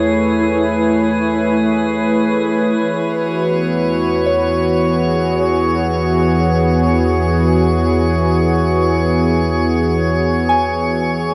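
Peaceful and warm, this free-time ambient excerpt in E major rests on a smooth, detuned analog pad that holds sustained chords up front, moving from Amaj7/E to E69 at 2.7 seconds. Beneath it sit a deep, rumbling, wave-folded drone on E2 and a very quiet, reedy, breathing harmonium, while a soft FM bell plays gentle arpeggios through chorus and diffuse delay in the background. A glassy texture of drifting sine overtones shimmers above, and the whole dreamy mix is soaked in a huge reverb with a 7.5-second decay.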